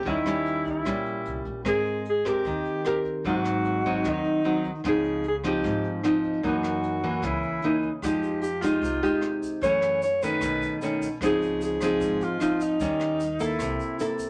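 Bossa nova at 151 BPM in Ab major, this romantic, sophisticated excerpt from a longer piece moves in a straight 4/4 feel. A breathy alto saxophone carries the melody up front in jazz style, its vibrato and scooped notes sounding distant and roomy, while a dark, fingerpicked nylon-string guitar sits up front beside it with classical touch and audible finger squeak. Underneath, a woody, thumpy upright bass played pizzicato on steel strings anchors the harmony, and a jazz brush drum kit stays in the background with airy, polished hi-hat, rim click and a punchy kick. A grainy, mellow tube shaker joins at 8.0 seconds, adding soft texture through the close. The chords drift through lush colours such as Abmaj9, Dbmaj9, Fm9 and B9 before landing on C6, all set in a small room with a reverb of 0.6 seconds.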